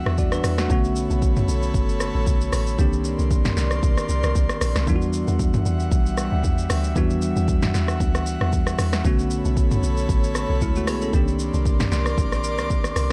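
Swung sixteenths at 115 BPM in 4/4 drive this hypnotic amapiano piece in E minor, cut from a longer work, where an up-front house kit with gritty 12-bit sampler character, a punchy snare, rim clicks, shaker, hi-hats and toms enters at 0.1 s over a round, dark log drum bass with fast-attack percussive decay, while a bell-like, bright tine electric piano accompanies and an airy, breathy pad, softened by chorus and pumping with sidechain, sustains mellow minor-ninth chords moving from Em9 through Bm9 to Cm9 in a digital ambience.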